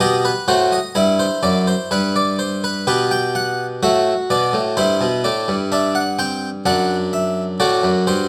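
A brilliant, plucked French-style harpsichord with octave strings sits up front and mid-forward as the sole voice of this stately, joyful baroque-style three-part fugue in G major at 63 BPM in a straight 4/4, moving from B7 and Em into a second section at 2.9 seconds that passes through G/B, C/G and D7/F#, all heard through close, detailed microphones in a moderate recital hall reverb in a short passage cut from a longer piece.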